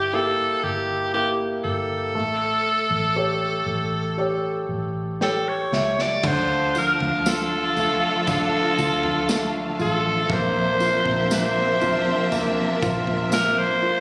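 An emotional, longing pop ballad at a slow, straight pulse, cut from a longer piece. A raspy, gritty alto saxophone carries the melody up front with light vibrato and a touch of delay. It is backed by an intimate concert grand piano whose action noise is audible and whose deep bass rings with long sustain, and by a dark, round, foam-muted electric bass. Near 4.7 seconds the piano plays a fill, and a drum kit enters at 5.2 seconds with a fill of its own, its punchy kick, toms and bright cymbals sitting in the background. From 6.2 seconds the arrangement blooms as a lush bowed violin section adds a second line, a string section holds sustained chords behind it, and a jingly tambourine joins. The whole has a light small-room ambience with a phone-in-the-room character, studio reverb and compression.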